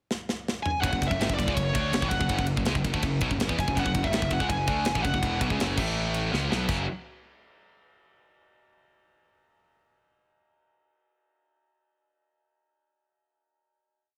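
A tight, up-front studio sound opens this short, complete heavy metal piece in F# minor, epic and aggressive at 164 BPM in a straight 4/4. The acoustic drum kit, with its tight kick and medium-tuned snare, starts at 0.1 s with a fill across the pickup bar before settling into a driving metal groove of crash, ride, snare and toms. At 0.6 s a warm, picked lead guitar enters, stating hook-like motif phrases between C#5 and G#5 until 5.4 s. At 0.8 s a bright, distorted power-chord riff arrives beneath it on high-gain guitar, shadowed by a very quiet scooped guitar and a growly fuzz bass that doubles the riff in driving eighth notes. The harmony sits on F#m before moving to A5 and then F#5, and a second drum fill leads into a final chord that rings to the close.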